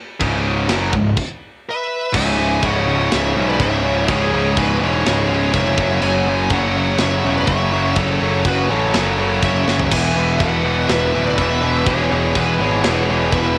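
A straight 4/4 pulse at 123 BPM drives this heavy, relentless metal excerpt in C# minor, which breaks off in a brief stop before dropping into a half-time groove at 2.1 seconds over C#m, F#m and E. A growly, fuzz-laden picked bass sits up front, while a tight metal kit with bright cymbals, including china and splash, a medium-tuned snare and a tight kick sits mid-forward and adds a fill at 9.7 seconds; a high-gain rhythm guitar in the background and two very quiet, tight distorted guitars, one double-tracked, churn out the riff. From 1.7 seconds two warm high-gain lead guitars carry a melody and a second line, the latter with tape echo, all within a home cassette recording with small-room ambience and light reverb.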